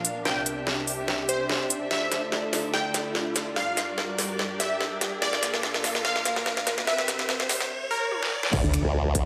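Heavy wobble dubstep in D minor at 145 BPM with a swung half-time feel, this menacing, chaotic build-up sets a bright detuned unison pluck melody with phaser and dub echo over lush bowed symphonic strings roughened by 12-bit sampler grit and sidechain pumping, an airy breathy pad in the background, a crisp-hatted dubstep kit playing drum fills, and a background riser, all in a wet digital room, until the impact at 8.5 seconds brings in a punchy overdriven electronic kick and up-front formant-sweep and metallic FM wobble basses on D2 as the chords land on Dm.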